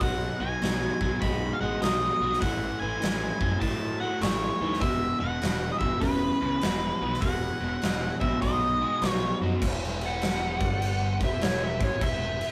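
A rough rehearsal-room recording with modest booth ambience captures a driving, gritty, swung blues rock and southern rock power trio cut from a longer piece, where an up-front, punchy rock kit and a bright, fuzzed picked bass push beneath a double-tracked overdriven guitar riff, a thick, very quiet tonewheel organ holds sustained chords through a slow rotary speaker, an octave-fuzz lead guitar carries the distorted melody until 9.4 s, and a smooth, dark second lead guitar plays a second line from 10.1 s.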